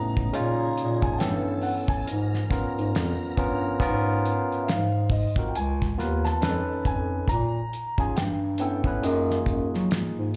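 R&B and neo-soul with a sultry, late-night mood at a slow 69 BPM in G# dorian, where a mellow bass clarinet with subtone, light vibrato and scooped notes carries the bass line up front, a barky tine electric piano through a combo amp adds slapback-echoed accompaniment, a dark, boxy grand piano sings the melody with slapback and tape echo, a lightly overdriven tonewheel organ on slow rotary speaker holds background chords until 3.8 seconds, and a damped 70s drum kit with a fat snare and tight kick enters at 0.2 seconds, all heard as a live gig through a club PA with soft reverb and a dulled top end.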